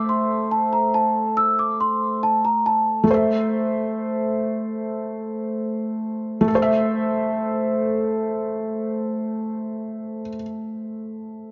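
A half-time 4/4 groove at 140 BPM sets up this hip hop excerpt in A minor, tuned to A4 = 439 Hz, and the mood is hard-hitting yet eerie. A large celesta carries the melody for only the opening 3.1 seconds, its bell-like, sweet tone ringing up front from soft felt hammers between A5 and E6, softened further by a low-pass filter. Beneath it, a felt-muted upright piano plays accompaniment from the start until 11.5 seconds, sounding intimate and muted, with audible action noise close to the ear and its own low-pass filter dulling the edges. The harmony rests on an A minor chord, and the piece moves from an opening section into a contrasting one at 6.5 seconds. A moderate, lush hall reverb with a 2.0-second decay blends with a small room ambience, and the overall sound is darkened, with nothing above 7.5 kHz. The recording is cut from a longer piece.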